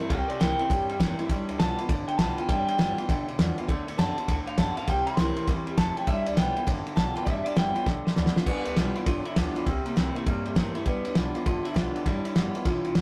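A bright, twangy electric guitar through a small old amp, dressed in spring reverb, carries the melody in this upbeat, rollicking rockabilly excerpt at 201 BPM, swung in G mixolydian, taking a solo until 8.5 seconds, with a drum fill from 7.9 seconds leading into the next section. Beneath it, a second slightly broken-up, lo-fi electric guitar plays a low riff, while a picked dreadnought acoustic with audible finger squeak fills out the accompaniment and a woody, thumpy pizzicato upright bass on gut strings holds down the low end. The cloth-damped kit sits up front with a fat snare, tight kick and dark cymbals, and the whole take has the rough feel of a rehearsal room, with tube saturation and light reverb.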